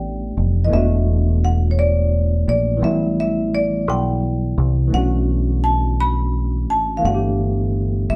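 Slow R&B in 6/8, this short 8.2-second excerpt moves at 57 BPM in dotted quarters with a sultry, late-night mood in B minor, tuned slightly low to A4 = 436 Hz. A warm, up-front marimba played with medium mallets carries the melody between C#5 and B5 throughout. Beneath it, a mellow tine electric piano supplies the accompaniment, its worn, slightly out-of-tune tone lightly overdriven and heard as if through its built-in speakers. A deep dub fingered electric bass anchors the bottom with a dark, round, direct-amped sound that sits prominently in the mix. The harmony drifts from G69 through E7sus4 and Asus2 to Bm11 before returning to G69 at 7.0 seconds, all captured as a band playing live together in one room with a moderate studio reverb.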